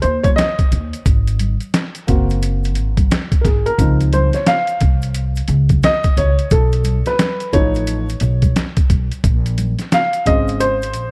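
Dark, warm production with light reverb and small room ambience frames this mellow, cool hip hop and jazz-hop excerpt at 88 BPM with a swung 16th-note feel, where an up-front upright piano, vintage and smooth with audible action noise and short sustain, solos over Ab7, Dbmaj9, B7#11 and Bbm9 alongside a woody pizzicato upright bass, a gritty, pitched-down, compressed boom bap drum kit with a thumpy kick and medium-tuned snare, and soft-handed maracas and congas sitting in the background.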